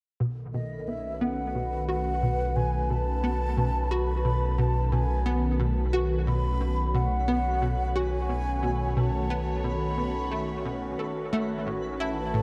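A straight 4/4 pulse underpins this luminous, expansive ambient excerpt, where a punchy, funky plucky analog bass riff with a fast-attack, decaying filter pluck, chorus, shimmer reverb and analog delay sits over a deep, round sine sub bass held up front. A swirling, detuned phased analog pad sustains evolving chords with chorus and shimmer reverb, while a breathy, mellow concert flute enters at 0.5 seconds with an expressive vibrato melody trailed by shimmer and delay. A very quiet, sparkling granular texture twinkles in at 0.6 seconds, and the harmony shifts from B7 to A at 11.0 seconds within a wet spring-reverb, echo-heavy cassette sound.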